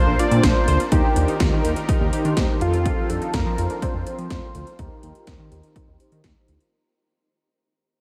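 A dreamy mix soaked in a huge ambient reverb opens this short synth-pop excerpt, a wistful, nostalgic passage cut from a longer piece at 124 BPM in a straight 4/4, with a fade-out and a filter sweep running across its full 6.7 seconds. Up front, the 80s electronic pad drums hit hardest, with a punchy kick, a gated snare and metallic hats, all overdriven and re-recorded in a large room. A glossy, chorused synth bass blends pulse-width and sawtooth tones with a filter sweep, anchoring the chords as they move from Bb to Eb, then F at 2.6 seconds and back to Eb. A bold, nasal octave-doubled lead carries the melody with vibrato, chorus, a low-pass filter and tape echo until 6.2 seconds. In the background, a lush, airy unison pad holds sustained chords while a dark, brassy synth section adds accompaniment, and a very quiet, round analog pluck spins arpeggios.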